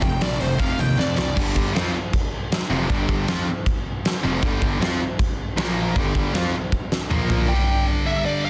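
A dense, heavily limited modern master with a light touch of small-room reverb carries this short, aggressive hard rock fragment in G minor, driving along at 157 BPM in straight 4/4. A huge arena drum kit sits up front, with a fat snare, punchy kick, bright cymbals, hi-hat and toms, and adds drum fills along the way. A warm, bluesy lead guitar plays a brief distorted solo in the first 1.4 seconds and returns at 7.5 seconds, while an up-front high-gain guitar grinds out the riff across the whole fragment. Beneath it, an overdriven semi-hollow guitar adds a very quiet hollow-body layer, and a double-tracked distorted guitar joins in the background from 1.4 seconds. A growly fuzz bass, picked and overdriven, underpins the riffs as the chords move among F5, G5 and Bb5.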